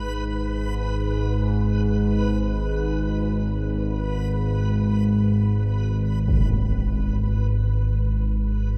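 An unsettling dark ambient drone in free time and G# minor, tuned to A4 = 439 Hz, opens on an up-front, detuned sawtooth-and-pulse analog drone with chorus, low between G#1 and G#2, beneath a faint, reversed, granular texture glowing dreamily on B4 through shimmer reverb, while a huge, bright impact dulled by a low-pass filter lands at 6.3 s, all suspended in a vast ambient reverb in this fragment cut from a longer piece.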